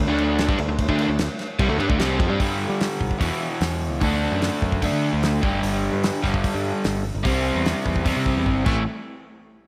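A big arena sound bathed in lush hall reverb frames this sunny, swaggering classic rock excerpt, cut from a longer piece and driven by a crunchy, double-tracked overdriven guitar riff sitting up front. A bright, punchy picked electric bass runs beneath it, while a damped 70s drum kit enters at 0.2 seconds with a fat snare, tight kick, hi-hat and crash, dry and mid-forward. The riff moves through power-chord changes and shifts into a new section at 2.4 seconds, and a drum fill closes it out at 8.5 seconds.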